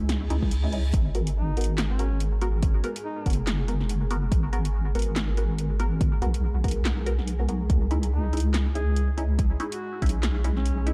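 A swung, half-time deep dubstep groove rides on an overdriven electronic kick placed up front, with a deep house kit of handclaps, metallic hi-hats and a punchy snare, all re-recorded in a large room, while a reverse cymbal sweeps in at 0.2 seconds. A deep, warm wobble bass with chorus dominates the low end beneath muted, phased dub chord stabs carrying tape grit and dub echo, and a blurred, evolving granular cloud pad drifts in the background. A warm, vintage duduk with vibrato sings a folk-style solo line through dub echo from 1.4 seconds and returns at 8.1 seconds, giving this cavernous, meditative passage from a longer piece its dark, spacious character.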